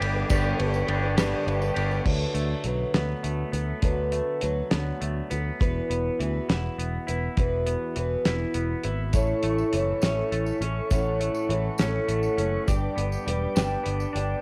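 Lightly reverberant and cassette-soft, this jangly, warm folk-rock and heartland-rock fragment moves at a relaxed 68 BPM in a straight 6/8, cycling through G, D6, Esus2, A and back to G. A woody, boxy picked twelve-string acoustic guitar with old strings shimmers in octaves alongside a clean, twangy electric guitar riff with subtle chorus, while an up-front fingered electric bass and a dry, dark 70s drum kit with a fat snare and tight kick hold the ground. A mellow, flute-like tonewheel organ with slow rotary-speaker vibrato and a bright, jingly tambourine sit out from 2.0 seconds and return together at 9.1 seconds.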